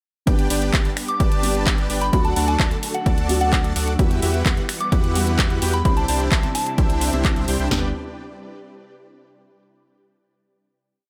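Festival progressive house with an anthemic, uplifting drop that runs from 0.3 to 7.7 seconds before resting on a final G chord, cycling through G, D, Emadd9 and Cadd9. A huge, detuned supersaw riff in close voicing and a saturated sub bass locked to the chord rhythm pump under sidechain compression, driven by a punchy, up-front big-room kit with four-on-the-floor kick, snare and toms plus metallic hats, finger snaps and handclaps. Behind them sit a boxy, felt-muted upright piano pushing syncopated held chords and a very quiet, lush phased supersaw pad, while a pure FM bell with chorus, tremolo and delay enters at 1.1 seconds with short answering phrases, all in light digital ambience.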